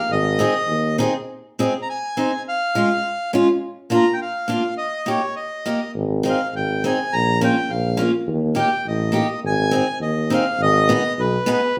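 A reedy accordion opens this bouncy, festive alpine folk dance-band piece, carrying the melody in Ab major at 103 BPM in a loose, rubato 2/4, while a picked steel-string acoustic guitar accompanies up front with audible finger squeaks. A warm tuba plays bass briefly at the start, drops out, and returns at 5.9 seconds to hold the low end until the close. The band plays live together in one room under a wet, large studio reverb, and this passage, cut from a longer piece, breaks off just as it turns to a new section on a G#m chord.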